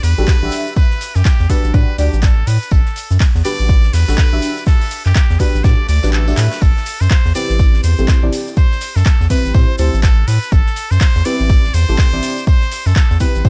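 A muted trumpet with a nasal, vibrato-laced tone carries the melody over soft, detuned chord stabs washed in chorus, phaser and dub echo, a round analog bass, metallic overdriven hats and claps, a very quiet gated-room kit, a grainy tube shaker and a deep overdriven kick entering at 0.3 seconds, in this moody, hypnotic deep house excerpt at 123 BPM in A dorian with swung sixteenths, where the kick drops out from 6.1 to 6.6 seconds under a faint electronic swell and a drum fill before the chords move from Em7/A to Am9.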